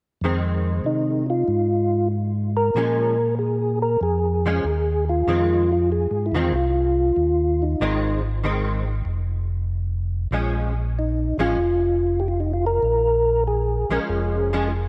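Soul jazz organ trio in F minor at 95 BPM, with a swung 4/4 feel and a soulful, late-night mood in this short section cut from a longer piece. A mellow tonewheel organ carries the bass line from 0.2 seconds, its dark, round tone lightly overdriven and turning through chorus vibrato and a slow rotary speaker. A hollow-body jazz guitar plays clean, picked, compressed accompaniment in its middle register, thickened by an ensemble chorus. At 0.9 seconds a percussive tonewheel organ enters with the melody, soft and flute-like with second-harmonic percussion, slow rotary, chorus vibrato and a diffuse ambient delay, sitting up front alongside the bass organ. The harmony moves between Fm7 and Bbm7, and a lush hall reverb soaks the whole mix in a dreamy haze.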